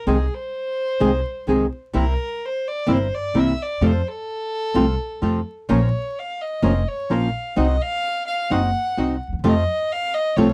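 A bowed solo violin opens this dramatic, sultry tango fragment, its rich gut-string tone carrying a light vibrato in a period style. Within a moment, fingerpicked flamenco guitar with audible finger squeak, growly pizzicato upright bass and dark, reedy bandoneon stabs join in at a rubato 128 BPM, moving from Ab/C through C7, F, Bbmadd9 and Cdim back to F. The dry, close 1970s-style studio sound has light reverb and a veil of vinyl crackle.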